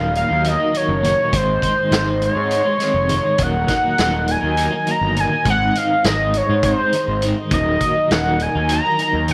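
A hollow, bold lead doubled at the fifth carries the melody up front, its sawtooth-and-triangle tone thickened by chorus, vibrato and tape echo, in a mysterious, trippy psychedelic rock excerpt in 7/8 at 204 BPM in Eb dorian, moving between Ebm and Ab. A twangy, clean twelve-string electric guitar plays a tremolo-laced riff over a round, fuzzed-out fingered bass, while a gritty vintage drum kit with a punchy kick enters at 0.2 seconds. Very quietly underneath, a lush, woody string section holds dark sustained chords, and a buzzing, shimmering tanpura drone sits barely audible until 6.3 seconds, all set in moderate plate reverb and small-room ambience.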